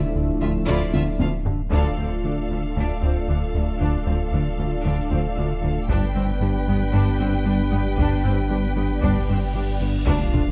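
Opening on a dark French horn section, a smooth, chorused analog pad and a brief, soft trombone section over a fat sawtooth bass riff and punchy sub bass in D dorian, this tense, brooding hybrid orchestral and electronic film cue at 115 BPM adds a clear violin melody with a background second line, rich violas, very quiet cellos and double basses from 0.4 seconds, heavy close taiko drums from 0.7 seconds, and huge, bright impacts and a sub drop that mark the shift to Dm at 1.7 seconds, before the harmony moves to G at 5.9 seconds and a cymbal swell and a final impact arrive near the end, all captured with close, detailed microphones and light reverb.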